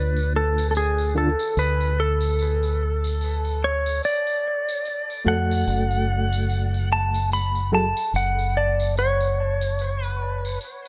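A light reverb gives this short, hypnotic trip hop excerpt a dark, close-knit sound, and a swung sixteenth-note feel keeps it slow and heavy-lidded. Up front, a clean, compressed lap steel guitar carries the melody with a twangy slide tone, trailed by dub echo. Beneath it, an overdriven reed electric piano played through a combo amp adds reedy, gritty chords, shimmering with fast tremolo, tape echo and a lo-fi 12-bit sampler grain, before dropping out at 7.9 seconds. A deep dub fingered electric bass sits prominently in the mix with a round, punchy tone. A tambourine enters at 0.2 seconds, with an acoustic, small-room character, and the harmony moves from D minor to F sharp minor at 5.7 seconds.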